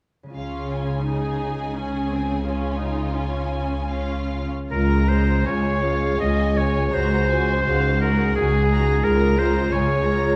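A dark, reverberant concert-hall sound surrounds this tender, lyrical classical passage in Db major. It is cut from a longer piece and moves in a rubato 3/4 at around 70-90 BPM. A ringing, bright concert harp spins arpeggios in the background from the opening, and bowed string sections enter almost at once. A rich, lush viola section fills in the accompaniment, a cello section sits in the background on the bass, and a close, up-front double bass section anchors the low end with a smooth, even tone. Above them, a distant violin section carries the melody high in its range with vibrato, while an expressive second violin section with soft attacks and a smooth top adds a second line in the background. At 4.7 seconds a clear oboe enters as a solo second line with light vibrato, and the harmony moves from Db to Ab7 over a Db bass at 6.9 seconds before returning to Db at 9.1 seconds.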